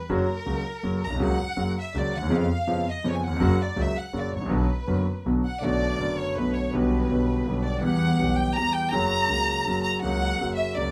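In a free, rubato three-beat sway, this nostalgic yet playful tango fragment repeats the same section twice, and the bowed violin section carries solo lines across both passes, at 0.0 and again at 5.6 seconds. The violins sound warm, close and expressive, placed up front with vibrato and portamento, while a clear concert grand piano, natural and deep in the bass, supplies the accompaniment from F# through C#7/E# and Bm to Gmaj7/B, Em and back to F#. A single bowed double bass adds an intense low line with light vibrato, all set in a moderate club reverb.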